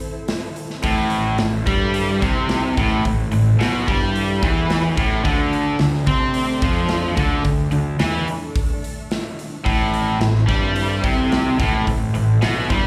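Brooding, gritty classic rock in A minor at 109 BPM, caught live through a club PA, where a silky, phased string machine and a punchy, big-room drum kit open together before two overdriven guitars, one biting with slapback echo and one bright cranked stack up front, enter alongside a fuzzy fingered bass at 0.8 seconds to drive a riff over Am and D5 in this short excerpt cut from a longer piece.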